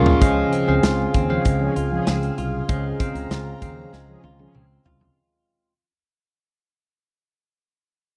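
Urgent and nostalgic, this short excerpt cut from a longer 1980s-style pop piece moves at 97 BPM over a Dbmaj7 chord, with a bell-like tine electric piano and a punchy, up-front big rock drum kit leading a blend of fretless bass, a bright chorused clean guitar riff, a brief overdriven guitar that stops at 0.7 seconds, a swirling phased analog pad, and round synth brass stabs entering at 1.3 seconds, as a drum fill from 3.9 seconds closes out a fade in a dry, close 1970s-style studio sound.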